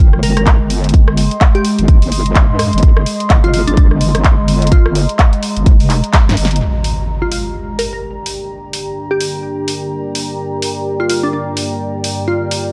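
A heavy, saturated wobble bass anchors this bouncy, gritty bass house excerpt at 127 BPM in G phrygian, sitting up front with chorus, overdrive and sidechain pumping from the start until 6.6 seconds, over an Ab/G chord. A punchy, layered electronic kick drives beneath it, joined by a house kit of handclaps, bright hi-hats, rim clicks and a punchy snare, with a swung 16th-note feel and a drum fill closing the first section. A glassy, crystalline wavetable pluck carries the melody throughout, its detuned tone touched with chorus and digital delay. Behind it, a warbling, nostalgic tape-like pad adds a lo-fi haze with chorus, built-in reverb and sidechain pumping. At 6.6 seconds the harmony shifts to Gm as an electronic impact hits, and a deep, moody analog pad with chorus and phaser enters at 8.2 seconds, its filter sweeping through the second half. The production is dark with light reverb.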